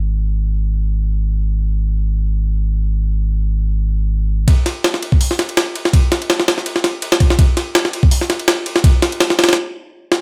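A digital-sounding ambience frames this atmospheric, nostalgic drum and bass and jungle excerpt at 165 BPM with a light swing: a deep, round, soft dub sub bass plays alone until 4.5 seconds, when a gritty, pitched-up, compressed jungle sampler-style drum kit with a thumpy kick, high-tuned snare, hi-hat and ride takes over up front in a tape-tinged studio room for a build-up that halts with a stop at 9.6 seconds.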